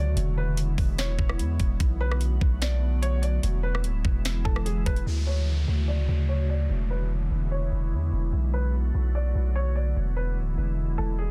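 Riding a half-time trap groove at 147 BPM, this blissful, dreamy cloud-rap excerpt pairs a felt-muted upright piano's soft, intimate melody, filtered and delayed, with a glassy, ethereal FM pad pumping through chorus and reverb, a deep, sine-toned 808 bass up front, and tape-flavoured trap drums with knocking kick, sharp snare and metallic hats that drop out at 5.1 s as an electronic downlifter and a filter sweep carry the chords of E7, Bm7 and Dmaj7 onward in a dense, heavily limited digital ambience.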